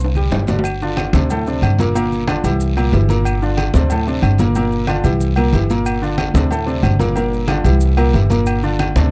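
Salsa at a brisk 184 BPM in 4/4, this festive, joyful excerpt opens with a short drum fill as a clear baby grand piano and a growly, thumpy pizzicato upright bass sit up front over Gm7, C7 and D5 changes, backed by ringing metal-shell timbales and agogo bells, low-tuned congas with a thick skin, woody claves, a raspy guiro and grainy maracas, all captured in a dry, close 1970s-style studio sound with little reverb.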